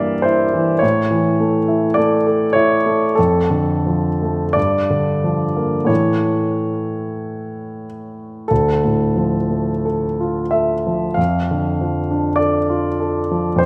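Played with free rubato in a slow 4/4 at 41-53 BPM, this mournful, melancholic romantic nocturne in D minor is cut from a longer piece and runs 13.7 seconds. A solo concert grand piano, intimate and up front, spans D2 to F5 with deep bass, long sustain and audible action noise, moving through harmonies such as Gm7, A and Dm. The polished sound sits in a moderate scoring-stage reverb with a 2.0-second decay.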